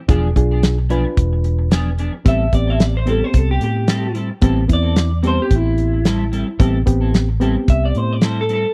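Opening on an E7b9 chord, a smoky, soulful straight-eighth soul blues in A minor at 111 BPM sets a mid-forward, tight-kicked drum kit and a dark, round, foam-muted fingered bass up front beneath a reedy, worn, slightly out-of-tune electric piano and clean picked guitar stabs with analog chorus, until at 2.3 s, on Am7, a bright, twangy, slightly broken-up guitar through a small old amp takes the melody with subtle chorus, all in a dry, close 1970s-style studio sound touched with studio reverb.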